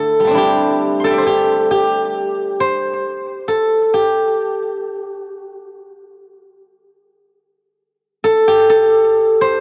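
A solo steel-string zither, played with fingerpicks and sitting up front, opens this short cut from a longer piece of Chinese traditional music, its ringing, silvery tone colored by cassette tape and analog delay, drifting in rubato around 58-69 BPM in the G zhi mode across a range of D3 to C6, with light reverb and small room ambience giving a pastoral, elegant air that shifts into a new section at 7.8 seconds before closing at 9.6 seconds.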